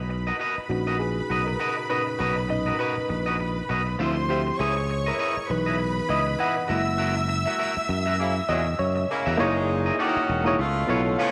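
Violins and a growly, punchy fingered bass open together at the top of this soul excerpt, joined almost at once by a slightly broken-up, twangy guitar riff washed in spring reverb. At 0.7 seconds a reedy, worn electric piano enters, slightly out of tune and heard through its built-in speakers, and it carries a solo through the opening section over chords moving from Bmaj7 through Dm9, C#m9 and F#7. The smooth, bowed violin section adds a lush second line with vibrato until 9.3 seconds, while the bass sits direct and up front at 100 BPM in 4/4 with a light swing on the sixteenths. The band hits an accent from 7.0 seconds, and at 8.2 seconds a clear, tight horn section arrives with soft-attack stabs that sound distant and roomy, in a jazz style. The closing passage turns to F#13 and C#7alt in B major, all set in a moderate plate reverb that keeps the mood romantic and lush.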